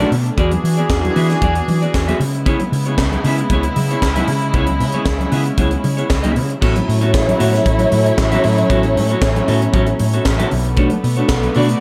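Disco at 115 BPM in 4/4 with a danceable, driving mood, this passage rides on an up-front, tight funk drum kit of kick, high-tuned snare, hi-hat, handclaps and crash cymbal touched with gated reverb. Beneath it sit a round, amped hollow-body bass, a dark, picked clean electric guitar and very quiet, bright, damped congas, while a distant, reedy string section with a gut-string, period-style tone holds sustained chords moving from E9 to C#m7. At 6.6 seconds a lush, woody second string section with vibrato and a smooth top enters as the harmony shifts to A69 and then Bm9, all in light reverb.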